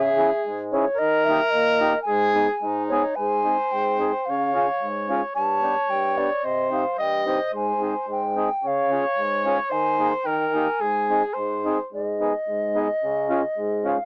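A bouncy 2/4 pulse at 110 BPM drives this jolly alpine folk dance-band excerpt, where a pure, woody baroque flute with crisp attack carries the melody over a soft-edged, distant-sounding trumpet second line and a reedy, dark accordion accompaniment, the trumpet and accordion carrying a cassette-tape character within a small, lightly reverberant home-recording sound that shifts from G# minor to Ab major at 3.2 s, with the trumpet dropping out at 11.9 s as the opening theme returns.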